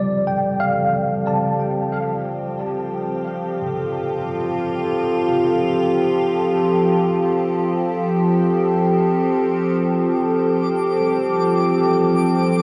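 Dark, hall-drenched production frames this peaceful ambient passage in free time and F major, where an up-front, morphing detuned wavetable pad fades in over the first 9.8 seconds with sustained chords moving from F to Fmaj7, a worn, slightly out-of-tune barky tine electric piano plays arpeggios through a combo amp with ensemble chorus and tape echo, and a bright, twinkling granular texture with octave-up shimmer arrives at 10.2 seconds.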